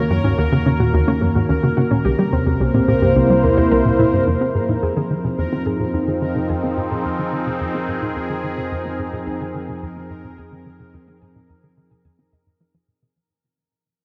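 A sweeping, resonant pad sits up front in this hypnotic, expansive space music, holding detuned sawtooth chords with a filter swell and chorus. Beneath it, a tight, punchy sequencer bass drives a dark riff through analog delay. Alongside it sit a nasal, pulse-width drone, a bubbling texture of random filter steps, and a warbly, dusty pluck that plays lo-fi arpeggios with 12-bit grit in the background. A huge ambient reverb bathes the sound, and from 4.3 s the bass takes a filter sweep while the arpeggios and the whole track begin to fade out.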